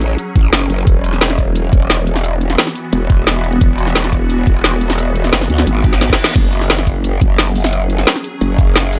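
Dark technical drum and bass at 175 BPM, aggressive and futuristic, where an up-front growling bass with formant-filtered wobble, chorus and tube saturation pumps against a swarming, detuned granular drone over F#m, E5 and F#5 chords, while an overdriven electronic kit with a knocking kick from 0.4 s, woody snare, bright hats and crash drives the dry mix, and a background reverse cymbal at 5.8 s meets a drum fill leading into 6.4 s.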